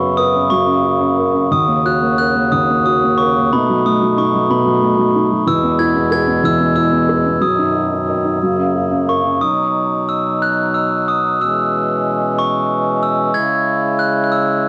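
Innocent and sleepy, this children's lullaby sways gently in 6/8 at 61 BPM, with a loose, rubato feel in B major, cut from a longer piece. A glockenspiel struck with soft plastic mallets carries the melody high and up front, its bell-like ring mellowed to a gentle shimmer. Beneath it, a felt-muted upright piano supplies a dark, boxy accompaniment with an intimate, thick-felt hush, dropping out at 9.4 seconds as the second section begins. A pedal harmonium holds sustained chords throughout, close-miked, dry and reedy, with a full, breathing quality. The piano and harmonium carry the character of cassette tape, and the whole home recording sits in a moderate studio ambience, moving from a section built on F#sus4, D#m7, B7 and E toward one centered on B, E6/B and C#m.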